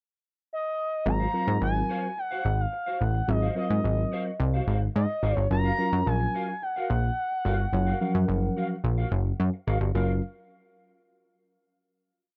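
Danceable and feel-good, this short, dry funk piece opens with a smooth, expressive synth lead at 0.5 seconds, its motif of call phrases carrying vibrato, chorus and slapback echo up front, before a punchy, fat syncopated boogie bass line with chromatic approach notes, a mellow tine electric piano pushing drop-2 chords and a dark, choppy sixteenth-note electric guitar enter together at 1.1 seconds, moving from Ab13 to Gbmaj7 and settling on a final chord at 10.0 seconds in a close 1970s-style studio sound.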